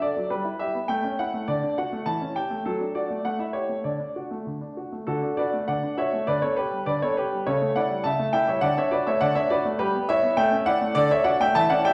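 This classical-period piano sonatina has a graceful, elegant mood, moving at a steady 102 BPM in a straight 2/4 in D major, with the instrument tuned to A4 = 438 Hz. A solo concert grand piano plays throughout, its sound clear and open with a deep bass, spanning C#3 to A5. The harmony circles closely around the home key, moving through Em/G, A7 and D in the first seconds and returning to that same turn near the close. The opening phrase is stated and then begins again at 5.1 s, passing through G/D and A7/C# before settling on D once more. The instrument is heard from further back in a recital hall with a wet, 1.4-second reverb, and the passage is cut from a longer piece.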